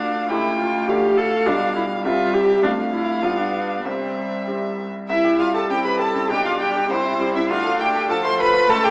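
In a rubato 2/4, this quick, lively and graceful classical-period movement for piano quintet, a fragment cut from a longer piece, sets a rich, vibrato-laden violin melody over a smooth, distant cello second line, an up-front viola accompaniment and a brilliant grand piano with audible action noise, while a second, focused violin line enters at 5.1 s, heard in a wet recital hall through a small speaker.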